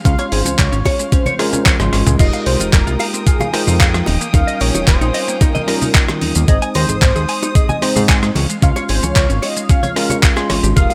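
A straight 4/4 nu-disco groove at 112 BPM sets a cosmic, groovy mood, built on a thumpy, overdriven electronic kick up front and a gritty, compressed sampler-style kit of hi-hat, handclaps, rim click, shaker, crash and toms, with a drum fill from 1.7 to 2.2 seconds and maracas, bongos and congas sitting in the background. A fat, detuned analog bass with sidechain pumping sits under a tine electric piano played through a combo amp and a focused, bowed violin section, both also pumping, while a clean, picked electric guitar riff glistens in lush chorus. Over chords moving from Dbmaj7 through Fm11, Eb9 and Ab, a bold sawtooth unison lead with vibrato carries the melody through dub echo, framed by a digital ambience.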